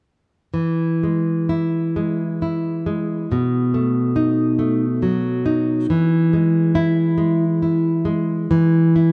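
A romantic solo classical guitar piece in E major, unfolding with a warm, sunny mood at a slow, rubato pace of about 41-48 dotted-quarter beats per minute in 6/8. The fingerpicked nylon-string guitar sits up front with a dark, full-bodied tone in a low register from B2 to E4, moving from E to B7 at 3.3 seconds and back to E at 5.9 seconds. A moderate plate reverb with a long 3.5-second tail surrounds this short fragment cut from a longer work.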